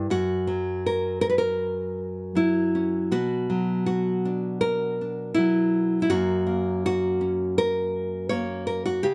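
Folk music for solo fingerstyle acoustic guitar, this brief passage from a longer piece carries an intimate, wistful mood across its 9.1 seconds. A nylon-string guitar plays alone throughout, fingerpicked in a classical manner and sitting up front in the sound. Its tone is bright and acoustic, ranging from a low F#2 up to C#5. The rubato feel lets the phrasing breathe freely over a 4/4 metre, with the harmony moving from F# to Bm at 3.1 seconds and back to F# at 6.1 seconds. A light reverb gives the guitar a gentle sense of space while keeping it close and personal.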